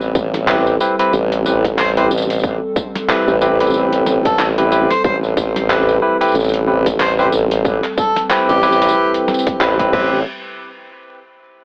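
Swaggering and funky, this glitch hop cut rides a swung 92 BPM groove in A minor, resting on a single Am9 chord through a drop that runs to 10.3 seconds. An up-front wobbling, formant-filtered sawtooth bass is joined by bright, barky tine electric piano stabs with sidechain pumping and digital delay, while a dark, detuned analog pad holds sustained chords in the background, and a distorted, layered electronic kick pairs with a gritty, pitched-down boom bap kit of snare, hi-hat, handclaps, tambourine and crash cymbal. From 1.8 to 9.1 seconds a warm harmonica carries the melody with light vibrato and scooped notes in a jazz style, and the mix is coloured by light reverb, vinyl crackle and an AM radio tone.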